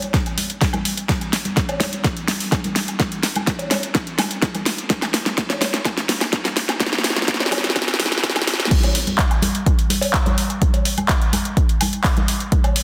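This is a short cut from a longer house track at 126 BPM in a straight 4/4, expansive and emotional in mood, and it opens at once on an up-front pop drum kit whose crash cymbal, handclaps, metallic hi-hats and fat, softly clipped snare sound layered and tape-warm. An overdriven electronic kick arrives at 0.1 seconds, punchy and produced, sitting up front alongside the kit. Woodblock, congas and cowbell follow at 0.3 seconds, bright, acoustic and close and dry, set lower in the mix with sidechain pumping. The opening stretch to 8.7 seconds is a build-up carried by a drum fill, and at 8.7 seconds the track drops into its next section, running to the end at 12.8 seconds. A lush hall reverb with a 1.9-second decay gives the space a sense of size, while the dense, heavily limited modern master, trimmed by a high-pass filter, keeps the sound loud and tight.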